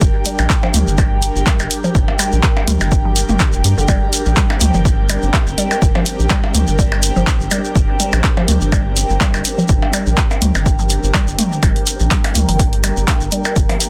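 Hypnotic and cool, this minimal techno excerpt rides on a punchy, up-front electronic kick and a rubbery, dark square bass with tube saturation and sidechain pumping, joined from 0.3 seconds by tape-warm handclaps and hi-hat from an analog drum machine and a nasal square pluck riff soaked in dub echo sitting in the background, with overdriven percussion blips and toms arriving at 0.4 seconds, while a close, dry shekere, an airy, breathy pad with chorus and phaser, and a very quiet, flickering granular texture fill out the dense, heavily limited mix over a single G minor chord.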